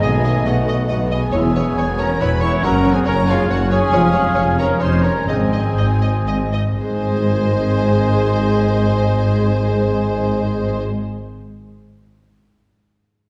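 In a straight three-beat metre that slows between 3.3 and 6.8 seconds, this soaring, adventurous cut from a heroic film score has a bowed violin section singing the melody with smooth vibrato. A second, lush violin line, a mellow flute group, an oboe and a clear, very quiet clarinet weave supporting lines, while rich violas carry the accompaniment and French horns and distant, roomy trombones hold sustained chords. A mellow trumpet adds stabs, a ringing fingerpicked harp spins arpeggios until 11.5 seconds, and expressive cellos with portamento join the double basses on the bass, all heard from further back in a reverberant scoring stage.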